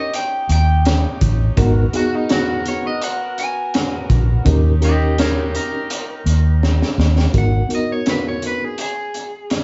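Recorded as a band playing live in one room with light reverb, this dusky, top-shy fragment of straight-eighth soul blues feels mournful and smoky. A twangy electric guitar at the edge of break-up carries the picked melody, soloing cleanly until 7.3 seconds, over a reedy electric piano with fast tremolo, quiet vintage horn chords with light vibrato, and a round, foam-muted bass sitting up front. The crunchy breakbeat kit, gritty and saturated with a punchy kick and high-tuned snare, plays a fill from 6.6 seconds into the closing section.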